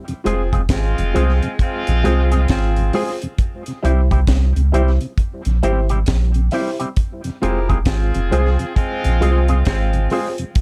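The recording has a dark, warm and nearly dry production, with the sub bass and drums up front. This roots reggae excerpt moves at a slow 67 BPM in 4/4, with swung sixteenths and a meditative, serious mood in F harmonic minor. The harmony shifts from Fm to C and back to Fm. A deep, round sine sub bass with a fast attack and long sustain anchors the low end. The dry acoustic kit has a high-tuned snare, a tight kick and hi-hat. A woody, intimate upright piano plays vintage-toned stabs, its action noise audible, while a clean, compressed, fingered electric guitar through an envelope filter adds tape-echoed accompaniment. A clear, tight horn section with light vibrato carries a pop-style second line through tape echo, and a mellow, lightly overdriven tonewheel organ sits in the background, colored by chorus vibrato, a slow rotary speaker and echo.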